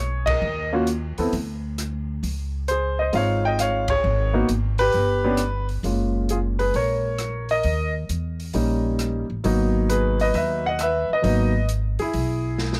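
A grand piano sits up front with the melody, its natural, warm tone touched by plate reverb, in this swinging, late-night jazz trio passage cut from a longer piece. A woody, thumpy pizzicato upright bass anchors the low end, while a dark, smooth acoustic drum kit in a small room adds hi-hat, ride, rim click, medium-tuned snare and a boomy kick. The band hits accents at 0.2 and 3.8 seconds as the harmony moves through C#maj9, G#m, G, F#maj7, D#7 and G#m7, and the drums close with a fill at 12.6 seconds.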